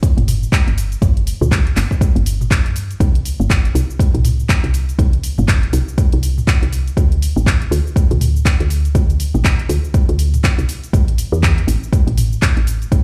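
A deep, layered electronic kick sits up front in this driving, hypnotic afro house excerpt at 121 BPM, its 16th-note swing carried by an afro-pop kit of handclaps, warm hats, shaker and toms in studio reverb, while a woody, round FM bass with a fast attack enters at 0.2 seconds with sidechain pumping, ranging from G1 to G2, in a bare room on a big sound system.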